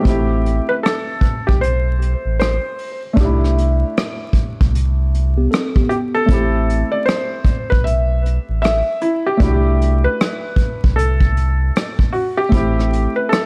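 Lo-fi hip hop at 77 BPM in 4/4 with a swung sixteenth feel, this nostalgic, melancholic fragment of a longer piece alternates between Am7 and C6. A felt-muted upright piano carries the melody through a low-pass filter and analog delay, while a second felt-muted upright piano, intimate with audible action noise and cassette tape color, plays the accompaniment beneath it. A deep, full sub bass with octave and a dark vintage brush drum kit with a tight kick, hi-hat and rim click sit up front, a clean mellow tine electric piano adds a brief second line from 5.4 to 6.3 seconds, and a small room ambience wraps the whole piece in vinyl crackle.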